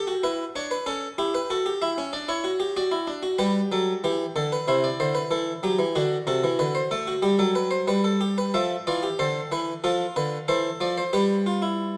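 Stately yet lively, this excerpt of a baroque-style three-part fugue features a solo Flemish-style harpsichord, its single set of plucked strings round and up front within a recital hall's moderate reverb, moving through a turn to D minor at 8.5 seconds before settling back on G.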